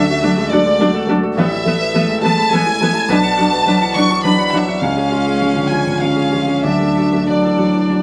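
Neoclassical piano and strings in a longing, melancholic 3/4 at 103 BPM with rubato, where a warm chamber violin section sings the melody over a felt-muted upright piano, rich viola and bright, ringing Celtic harp arpeggios, joined at 0.2 seconds by a dark, woody cello second line in the background, all played live in one room with wet studio reverb on this short fragment of a longer piece.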